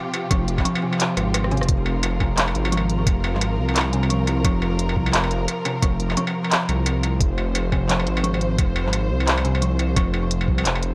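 A veiled, con sordino string section opens this tense, spacious half-time drum and bass excerpt in F minor at 174 BPM, its lush bowed chords pumping under sidechain, joined within a fraction of a second by an industrial kit of handclaps, smooth hats, rim click and struck metal, up front and re-recorded in a small room. From 0.3 s a woody, hollow kalimba rings out tape-echoed arpeggios, while a deep, rumbling detuned saw bass and a thumpy, pitched-down sampler kick anchor the low end, with a drum fill at 1.2 s. The swung 16ths sit in a dry, gritty hardware sound with digital ambience.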